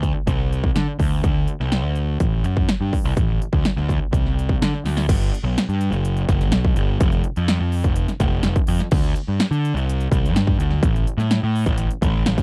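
Bright and playful, this short cut of math rock and midwest emo pairs a fuzzy, overdriven picked electric bass, up front and ranging from F1 to D3, with a punchy, layered big-room dance drum kit whose crisp hats, crash, kick and snare carry their own overdriven grit. A drum fill at 4.9 seconds leads into a new section at 5.1 seconds, and the dry, close sound recalls a 1970s studio.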